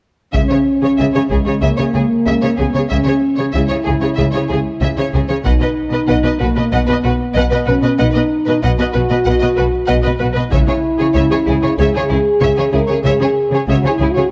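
Heard from 0.3 s, this dramatic, heroic cinematic orchestral cue at 94 BPM in C# dorian opens with heavy-stick taiko hits, saturated and compressed, under mellow French horn chords, lush vibrato violins carrying an expressive melody over a focused second violin line, smooth violas, and rich bowed cellos and double basses, with the taiko dropping out at 1.6 s and returning from 5.5 to 11.8 s as the harmony moves from C#m to B and back, all in a close, detailed sound with light reverb.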